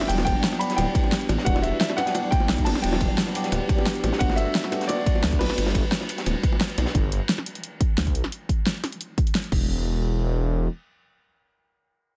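Liquid drum and bass, lush and soulful, where an intimate grand piano melody with audible action noise and digital delay floats over a clean phased electric piano, a very quiet breathy pad moving from Em9 to Gmaj7, punchy up-front electronic kick and fat-snared pop kit layered with a gritty, dark breakbeat kit and round low-tuned bongos, while a menacing detuned saw bass with a filter swell carries on alone until 10.7 seconds in this dense, heavily limited excerpt.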